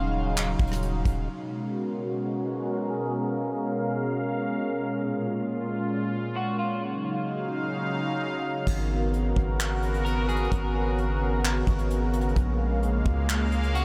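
A bright, detuned sawtooth pad with chorus, sidechain pumping and a low-pass filter opens this spacious, ethereal half-time cloud-rap fragment, joined by a deep sine 808 bass and a very quiet, breathy wind-like noise layer; the bass and a soft brush kit with tight kick, rim clicks, hi-hat, handclaps and crash fall away by 1.3 seconds as a long filter sweep begins, then both return at 8.7 seconds, while a slightly broken-up electric guitar with lush chorus and delay surfaces in brief background phrases, the whole mix soaked in a dreamy, huge reverb.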